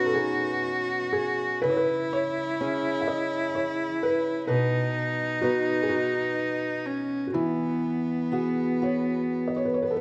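Celtic folk slow air in a rubato 6/8, tender and nostalgic, cut from a longer piece, where a soft, felt-muted upright piano carries the intimate melody, a clear, up-front cello adds a second line with light vibrato and an airy, earthy bow, and a dark, boxy fingerpicked acoustic archtop guitar accompanies with audible finger squeak, all three playing together throughout and set in a moderate recital hall reverb.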